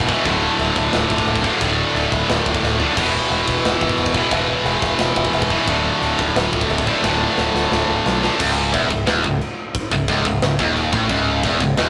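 Aggressive and heavy, this short heavy metal excerpt drives at 177 BPM in C# phrygian, with a bright, double-tracked high-gain guitar riff up front over chords moving from D5 to E5 and settling on C#m at 8.4 seconds. A growling, overdriven picked electric bass sits low beneath it, while a tight, gritty acoustic drum kit with a big-room sound, bright china and crash cymbals, a medium-tuned snare, kick and toms adds fills at 2.6 and 7.0 seconds. Light reverb and tube saturation give the whole a rough rehearsal-room character.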